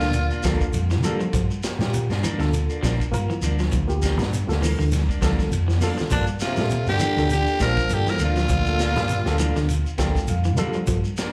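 Afrobeat at 100 BPM in G dorian, funky and defiant, heard as a live club gig through the PA with light reverb, sitting on a Gm7 chord with a swung sixteenth feel. A raspy, gritty tenor saxophone carries the melody up front while a veiled, bucket-muted trombone with scooped notes plays a second line beneath it, both with slapback echo, heard briefly at the start and again from 6.1 seconds. Underneath, a round, punchy fingered bass and a vintage kit with dark cymbals and a tight kick drive the groove, joined by a grainy shekere, soft-handed congas, a slightly broken-up twangy guitar playing arpeggios, a clean guitar adding stabs with tape echo, and a worn, reedy electric piano with fast tremolo that closes with a fill around 9.7 seconds after a drum fill at 4.9 seconds.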